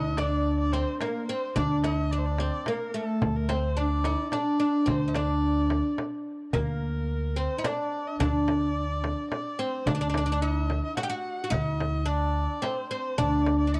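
A bright, fretless oud with double strings leads up front in this passionate, festive Persian modal ensemble piece in 3/4, joined from the start by a smooth, bowed kamancheh with vibrato and a slapback echo on the second line and a thumpy, woody pizzicato upright bass holding a low D, while a small frame drum played with soft hands enters at 0.2 s, the music shifting into a new section at 6.5 s within a dry, close 1970s-style small-room studio sound.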